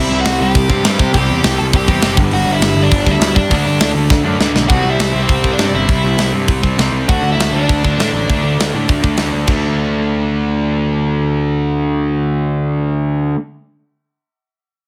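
A tight metal drum kit sits up front in this energetic, rowdy punk rock excerpt at 201 BPM, its bright cymbals, medium-tuned snare and tight kick ringing in a big room before a drum fill at 4.1 seconds and a stop at 9.5 seconds. An overdriven electric guitar carries the melody until 9.1 seconds over two riffing guitars, one bright and compressed with distortion, the other sludgy, overdriven and set in the background, while a growly, fuzz-laden picked bass drives the low end. The chords move through C, G5 and D5 under light reverb, and the guitars and bass carry on alone to the close.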